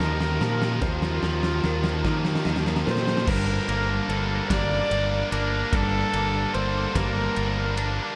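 Post-rock in a slow 6/8 at 49 BPM in G minor, cinematic and melancholic, this short cut from a longer piece opens with a build-up and drum fill over Ebsus2 before settling onto Gmadd9 at 3.3 seconds. A reedy, gut-strung viola carries the melody with delay, over a growling overdriven fingered bass up front, a bright double-tracked distorted guitar riff, clean twangy guitar arpeggios with chorus and delay in the background, and a big, dark rock kit with a fat snare and punchy kick. A felt-muted upright piano adds very quiet, intimate arpeggios with audible action noise from 0.4 to 3.3 seconds, and the whole mix is soaked in a huge, dreamy reverb.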